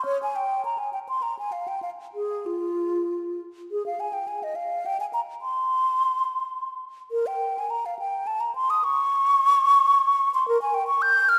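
A mellow, hollow silver concert flute, close-miked and up front with an airy tone, soft attack and vibrato, plays alone from F4 to G6 in this solemn, grave baroque-style fantasia in F minor, moving in a rubato 3/4 at 95-112 BPM through a brief opening statement that returns at 3.7 seconds, all set in a wet church reverb, in an 11.4-second excerpt cut from a longer piece.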